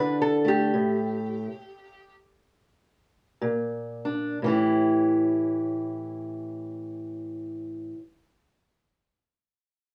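Soulful and laid-back, this short cut from a longer acoustic country blues piece moves at a slow 58-74 BPM in 4/4 with a swung eighth-note feel, sitting in A mixolydian. A lap resonator guitar carries the melody, played with a steel bar and fingerpicks, its metallic, nasal slide voice staying between G4 and B4 and sounding only from 0.0 to 2.2 seconds. Beneath it, a fingerpicked steel-string parlour guitar with old strings gives a dark, woody, boxy accompaniment ranging from A2 to G4, playing until 8.0 seconds. Both guitars sit up front in a small room with a wet reverb. The opening slows down, and the band stops between 0.7 and 3.4 seconds before the harmony settles onto A7 at 4.4 seconds.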